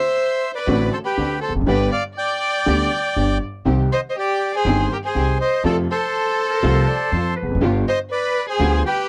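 Tense and dramatic, this short tango excerpt moves at 121 BPM in 4/4 with a rubato feel, its chords passing from D7 through G, Cm and F to G7. A reedy, up-front bandoneon carries the melody over a bowed violin second line with vibrato, while a clear, slightly detuned upright piano, a pizzicato upright bass with a dark, woody tone and distant chamber string stabs join at 0.7 seconds. A bright clarinet with slapback echo adds a brief second line in the background from 6.4 to 7.7 seconds, all captured in a dry, close 1970s-style studio sound.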